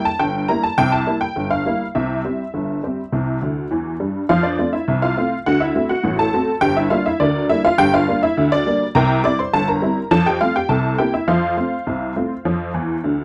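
Ragtime piano in F major at 103 BPM in a straight 2/4, this jaunty, lively excerpt features a solo honky-tonk upright piano whose detuned, jangly, woody tone sits up front in a dry, close 1970s-style studio sound. The piano spans G1 to D6, moving through chords such as C7, D7 and Gm as the opening strain repeats from 4.3 seconds. Short piano fills mark the close of each pass, at 3.4 and 12.7 seconds.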